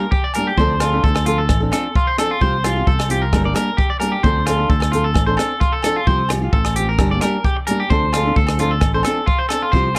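A fingerpicked flamenco guitar and a twangy electric guitar at the edge of break-up open this bittersweet, danceable highlife guitar band excerpt together, cut from a longer piece in D minor at 131 BPM in 4/4 with a light sixteenth-note swing. The acoustic guitar carries the accompaniment with a warm flamenco tone and audible finger squeak, while the picked, slightly broken-up electric guitar sits up front with arpeggios coloured by tape echo. A compact cocktail drum kit comes in at 0.1 seconds with hi-hat, rim click and a punchy kick, its sound dry and close to the front. Ringing agogo bells follow at 0.3 seconds, kept close yet in the background. At 0.6 seconds a fingered electric bass adds a dark, round, direct low end as the harmony cycles through Gm, Dm7 and Csus4 under a light reverb.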